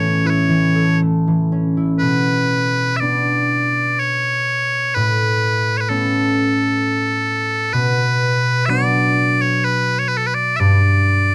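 Celtic folk slow air at 63 BPM in 3/4, played with rubato and uneven beats, carrying a nostalgic, pastoral mood across this 11.3-second fragment of a longer piece. Piercing, bright bagpipes hold the continuous melody up front from A4 to E5, while a fingerpicked concert harp rings beneath in a lower register, moving through chords from A to Bmadd9, Aadd9, Bm and finally G at 10.6 seconds. The sound is dry and close, like a 1970s studio recording with light reverb, and the piece moves into a second section at 2.0 seconds.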